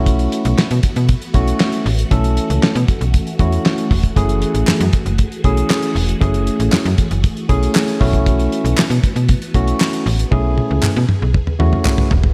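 Early-eighties boogie funk with a slick, late-night mood, this excerpt moves at 117 BPM in a straight 4/4 feel in F# minor, shifting from B7sus4 to F#m9 at 4.2 seconds. Up front, a snappy FM bass with a metallic, fast-attack, decaying digital tone sits beside a dry, dark drum kit whose fat snare, tight kick, hi-hat, toms and handclaps have a smooth, rolled-off top. A warm, clean tine electric piano played through a combo amp carries the accompaniment with a slapback echo. Behind it all, a bright sawtooth string machine holds swirling vintage chords with a slow attack and long release, colored by ensemble chorus and phaser. A close, hollow group handclap joins at 4.7 seconds, and a drum fill closes things out from 10.3 seconds, all set in a light, small-room reverb.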